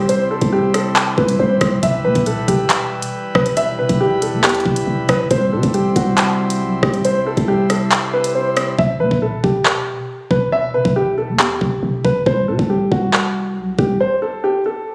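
Cold and ominous, this half-time drill piece at 138 BPM in E minor sets a dark, mellow baby grand melody with tape echo up front over full pipe organ chords in a romantic voicing, which stop at 8.8 seconds as the music moves into its second section. A growling, buzzy 808-style bass with a fast attack sits under an electronic drill kit of knocking kick, handclaps, rim click and warm hats; the kick drops out just before the organ stops, and the hats fall away as it stops. Captured on a phone in the room with light digital ambience, the boxy piano, its action noise audible, plays alone after the bass and drums stop at 14.0 seconds.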